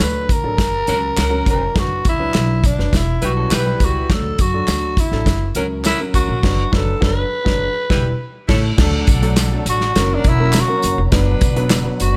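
Joyful and danceable, this uptempo 1960s-style soul excerpt rides a straight 4/4 groove from an up-front acoustic drum kit with a tight kick, woody pizzicato upright bass, a dark, mellow upright piano and a close, dry layer of handclaps, tube shaker and tambourine in the background. A raspy, breathy tenor saxophone carries the melody with growling, scooped notes, while a soft-attack saxophone section with vibrato adds a second line from 0.9 s and the full band hits an accent between 6.4 and 8.8 s. A dark, slightly broken-up electric guitar slips in a brief fingered riff at 3.4 s, and a very quiet, flute-like tonewheel organ with key click and chorus vibrato holds sustained chords from 8.8 s, all set in a small room ambience.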